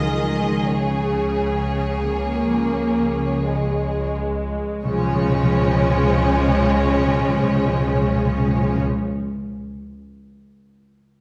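A lyrical, slow romantic orchestral passage in Db major at 41-46 BPM opens with a violin section singing a smooth melody with light vibrato over a lush second violin line, rich violas, concert harp arpeggios ringing in the background, cellos and a distant double bass section, the rubato pace slowing through the first 4.9 seconds before soft-mallet timpani enter with a round tone, the ensemble heard from further back in a reverberant recital hall.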